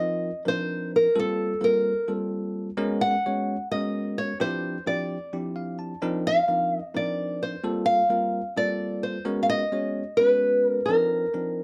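A fingerpicked nylon-string guitar carries the melody up front, its small, acoustic tone touched by a slapback echo. This is a nocturnal, driving jazz excerpt in 7/8 at 259 BPM counted in eighths, with a straight feel across its 11.6 seconds. Beneath the guitar, a bell-like tine electric piano supplies bright, clean accompaniment, dressed in a lush chorus and also sitting close to the listener. The harmony moves through minor eleventh chords, opening on Cm11 and passing through Gm11, Abm11 and Dm11 before returning to Cm11. The electric piano steps forward with a short fill from 5.3 to 6.0 seconds, and the whole performance sits in a wet club reverb.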